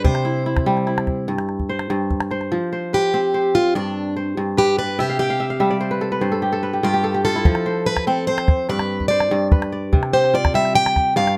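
A plugged-in steel-string acoustic guitar, a bright, ringing kora and a small, dry calabash open this flowing, warm piece of West African string and xylophone music together, moving at 97 BPM in a straight 12/8 in F lydian. At 2.5 seconds the guitar's concert-toned picked melody becomes a solo while the calabash falls away, and the kora's crisp fingerpicked arpeggios take a fill from 5.0 seconds. The calabash returns at 7.5 seconds, all three parts sit up front in close, detailed sound with light reverb, and the passage is cut from a longer piece.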